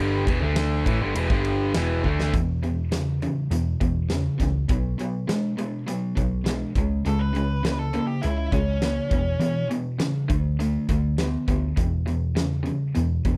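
A straight 4/4 classic rock groove at 102 BPM in E major drives this sunny, swaggering excerpt, where a bright, compressed distorted guitar riff and a raw, lo-fi overdriven garage guitar riff ride over a dark, round hollow-body bass and a huge arena drum kit with a fat snare and punchy kick that drops a fill at 2.0 s, while a fuzzed octave lead guitar with slapback echo cuts in from 7.1 to 9.7 s, the whole take set in a dry, close 1970s-style studio sound.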